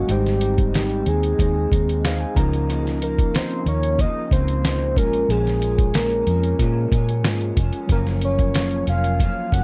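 This dry, close recording has a 1970s studio character, with little reverb around the instruments. It is a dreamy, laid-back stretch of indie and bedroom pop at 92 BPM in a straight 4/4, cut from a longer piece and moving through Abmaj7, Db69, Bbm7 and Gbmaj7. A soft, round synth lead carries the melody in sustained sine and triangle tones layered with a sub octave, with a fast attack, vibrato and analog chorus. Up front, a muffled, pitched-down sampler-style drum kit with a thumpy kick enters at 0.1 s beside a dark, foam-muted fingered bass that sounds punchy and amped. An electric guitar through a small old amp adds slightly broken-up, picked, compressed accompaniment with ensemble chorus and a warbly pitch drift. In the background, a barky, gritty tine electric piano with a cassette-tape colour accompanies throughout and plays a fill from 1.7 to 2.7 s.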